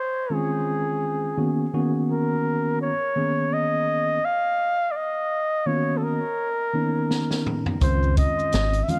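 Bathed in studio reverb, this relaxed jazz-hop excerpt opens with a breathy, whispered flugelhorn melody carrying tape echo, vibrato and scooped notes over mellow tine electric piano chords moving from Dbmaj9 to Cbmaj9, until an open jazz drum kit with a high-tuned snare and boomy kick enters on a fill at 7.1 seconds, and a dark, round dub bass joins with close maracas and congas at 7.8 seconds.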